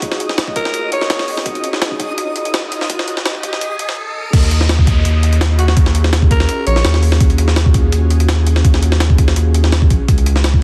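An airy, ethereal pad and a reversed, granular texture open this raw, frenetic drum and bass excerpt in Eb minor at 167 BPM, while a gritty, sampler-style jungle kit drives from the start with a thumpy kick, high-tuned snare, hi-hat and crash. An electronic riser climbs through the build-up, and a growling, raspy alto saxophone cuts in briefly with breathy, jazz-style phrases soaked in dub echo. After a short stop at 4.0 seconds, the drop lands at 4.3 seconds as a deep, thick sine sub bass with tube saturation enters up front beneath the pitched-up, tape-warm drums. The saxophone returns for another close-miked solo phrase during the drop, its vibrato bright over the mellow pad's sustained chords, which shift from Ebm11 to Dbm11 near the end. The dense, heavily limited master carries a light reverb and a layer of vinyl crackle.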